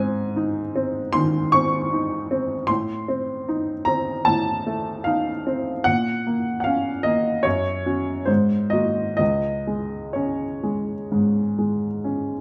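Rubato governs the rhythm here, with the pulse drifting freely between 62 and 79 BPM in a loose 4/4, so the phrases breathe and stretch rather than march. This is a romantic classical character piece for solo piano in Db major, passionate and lyrical in mood, tuned slightly bright to A4 = 441 Hz. The upright piano plays alone for the full 12.4 seconds, spanning Db2 to Db6, its woody, present tone sitting up front with a short sustain that keeps each chord distinct. The harmony moves from Ab through a shadowy Adim at 2.7 seconds, settles on Bbm, then passes through Gb5 and Ab9 before arriving on Db5 at 9.2 seconds. A moderate large-studio reverb of about 1.2 seconds surrounds the instrument, and the overall production leans dark and warm, giving this fragment of a longer work an intimate, heartfelt glow.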